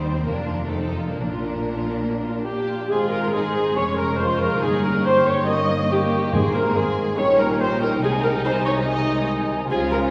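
A spirited, cheerful classical-period orchestral movement, cut from a longer piece, opens with muted, veiled strings, violins carrying the melody over a close viola accompaniment, a double bass line, and a cello line set in the background. A clear cor anglais joins at 2.4 s, followed at 2.9 s by a pure flute group, a dark, distant bassoon and mellow French horn chords, with a brief timpani entry at 6.3 s, all heard from further back in a reverberant concert hall.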